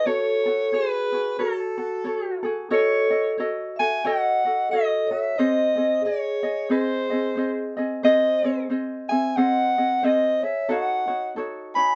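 A relaxed, dreamy Hawaiian piece opens with soprano saxophone, vibraphone and ukulele sounding together from the very start, a short cut from a longer performance at 90 BPM in 4/4 with a gentle swing on the eighth notes. Up front, the mellow soprano saxophone carries the jazz-style solo melody, its vibrato floating with a distant, roomy quality. Beneath it, the vibraphone plays a second line with soft mallets, its metallic, ringing tone shimmering through a slow motor vibrato and a boxy small-room character. The acoustic ukulele, also up front, supplies a bright, light, thumb-plucked accompaniment. The harmony drifts from F#madd9 to D#m7b5 and on to G#, returning to D#m7b5 at 10.7 seconds. The band plays live in one room with light reverb, and the sound stays soft at the top, with the highest treble rolled off.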